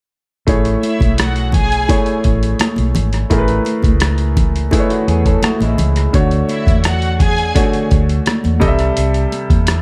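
A straight 4/4 groove at 85 BPM anchors this lush, smooth 1970s-style soul excerpt in A major, driven by a gritty, pitched-down boom bap sampler-style kit of thumpy kick, hi-hat and rim click, compressed and tape-toned and sitting up front in a small room. Beneath it, a dark, round, foam-muted fingered electric bass gives a punchy low end, while hard-handed, high-tuned congas with a thick skin play along close and dry in the background. A clear, intimate grand piano carries the accompaniment through Amaj7, Dmaj7 and C6 chords, its natural tone bringing audible action noise close to the ear. A distant studio violin section adds an expressive second line with soft-attack bowing, vibrato and portamento, entering at 0.8 s and returning at 6.5 s. Between those phrases, at 4.7 s, a picked electric guitar through a small old amp slips in a brief, slightly broken-up, lo-fi riff coated in lush chorus.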